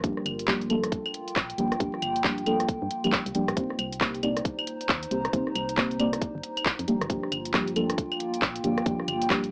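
A deep, mellow chord stab sits up front, its soft, dark tone thickened by chorus, phaser and digital delay as it moves from Gm7 to Cm7 and back to Gm7 at 6.9 seconds. This short cut from a longer UK garage track has a bouncy, late-night two-step feel, with a swung groove in 4/4. A garage drum kit of claves, handclaps, rim clicks and warm hi-hats is placed forward in the mix, joined by a tight electronic kick, both with a layered, produced character. Underneath, a hollow, organ-like FM bass plays low and percussive, with a sidechain pumping motion. A warbling, nostalgic pad with a lo-fi, tape-like quality fills the background with slow-blooming sustained tones, coloured by chorus and its own reverb and also pumping. The whole piece has a moderate studio reverb, a layer of vinyl crackle and a small-speaker sound that adds to its hazy, after-hours atmosphere.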